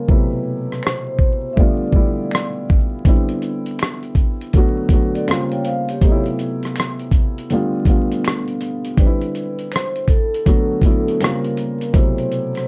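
Vinyl crackle and a light reverb frame this reflective, melancholic lo-fi hip hop excerpt, which moves at 81 BPM in 4/4 with a swung sixteenth-note feel in A dorian. A dark, woody upright piano sits up front throughout, carrying smooth, vintage-toned chords that cycle through Am69, G9, Cmaj9, Bm7 and Bbm69. A dusty, sampler-style drum kit of gritty hi-hat, rim click and a thumpy kick is compressed and re-recorded in a small room, while a quiet, human finger snap adds acoustic colour in the background. A soft-mallet vibraphone states a brief, ringing melody with slow motor vibrato and a boxy small-room tone at the opening, then returns at 9.0 seconds. In between, at 5.1 seconds, a second mellow vibraphone line appears briefly, its metallic shimmer trailed by tape echo.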